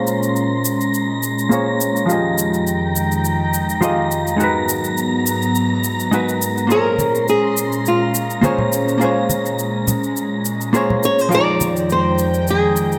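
A fingerpicked acoustic flamenco guitar carries the melody from 6.7 seconds in this relaxed sunset chillout excerpt at 104 BPM in Bb minor, with a gentle swing on the sixteenths. Underneath, a dark, clean hollow-body jazz guitar plays compressed accompaniment through a filter sweep and delay, while a breathy, chorused pad holds mellow, slow-blooming minor ninth chords and a wind-like tuned noise texture drifts high above. An electronic layered shaker keeps time throughout, close acoustic congas join from 7.0 to 11.7 seconds, and a lush plate reverb gives the whole piece a bright 1980s-style digital sheen.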